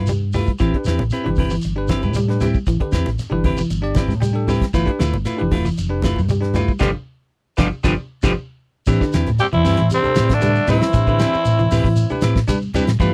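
This afrobeat excerpt opens with bright, clean electric guitar stabs over a round, punchy hollow-body bass, quickly joined by a slightly broken-up guitar picking arpeggios, a dry 70s drum kit with a fat snare and tight kick, low-tuned congas in the background and a grainy, distant shekere. A bell-like tine electric piano comps from 0.7 seconds and slips in a short fill, and the band hits an accent before the groove settles back onto its two-chord vamp, defiant and hypnotic. At 9.4 seconds a raspy, up-front tenor saxophone takes the melody, backed by a clear trombone section and a growling alto saxophone, all captured in a close, dry 1970s-style studio sound with light reverb.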